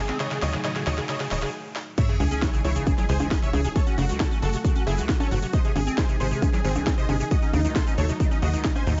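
Soaring and euphoric, this 135 BPM uplifting trance excerpt in C# harmonic minor opens with a build-up in which a huge, bright, detuned supersaw lead carries the melody over a lush, warbling unison pad, squelchy resonant acid bass arpeggios under a filter sweep, a tight, punchy sequencer bass, a very quiet riser and sub drop, and a techno kit whose fill features a cracking snare and smooth hats, before a brief stop at 1.5 seconds. At 2.0 seconds the drop lands with an impact as a heavy, up-front electronic kick and a grainy egg shaker enter, the chords moving from C#madd9 through F#m and G# to D#dim. Sidechain pumping runs through the lead, pad and both basses, while the acid line adds 12-bit sampler grit and dub echo, all set in a digital ambience.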